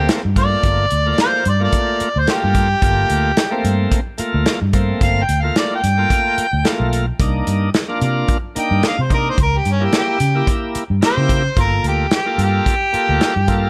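Straight-eighth soul blues with a mournful, soulful mood, this excerpt features a mellow, overdriven harmonica carrying the jazz-style solo melody with light vibrato and scooped notes, backed by a bright, shouting tonewheel organ turning through a slow rotary speaker. A vintage foam-muted fingered electric bass sits round and punchy up front, while a dark, smooth soul drum kit in a small room plays hi-hat, kick and snare as the harmony moves from Gm7 through Cm7 and C#dim7 back to Gm7. The sound is dry, with little reverb and a faint mains hum underneath.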